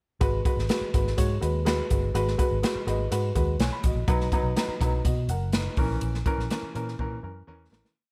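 Uptempo 1960s-style soul with an urgent, passionate mood, this short piece runs as a single verse over a straight four-beat pulse. A swinging big-band drum kit sits up front with an airy, hall-like acoustic sound, a punchy kick and a medium-tuned snare driving a backbeat soul groove on hi-hat, kick and snare. A vintage muted fingered electric bass plays a dark, round, foam-muted, amped line that is melodic and syncopated, with ghost notes and chromatic approach notes. An upright piano, woody and present with short sustain and plate reverb, comps in eighth-note chords with drop-2 voicings and adds a fill between 2.6 and 4.1 seconds as the harmony moves from G#m7 to B and then A#dim. The track fades out from 6.0 seconds while the drums close with a fill from 7.0 seconds, all set in light room reverb.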